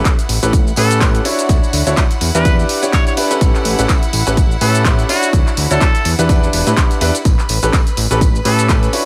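Euphoric and uplifting, this short cut from a longer piano house track moves at 125 BPM in 4/4 with a swung 16th-note feel, centered in A mixolydian over a cycle of A9, Dmaj9 and Em7. A clear concert grand piano carries the riff with a deep low end and tape echo, while a fat, detuned sawtooth analog bass sits up front with a filter sweep, both pumping against the punchy, layered kick that is re-recorded in a small room. A tape-warm analog drum machine adds handclaps, hi-hat and shaker, and a very quiet, band-limited tambourine sits beneath them. At 0.8 seconds a solo trumpet with a straight mute enters on the melody, its brilliant, nasal tone marked by scooped notes, light vibrato and tape echo. In the background, a biting studio violin section holds sustained chords with light vibrato, also breathing with the sidechain pump, all set in a small room ambience.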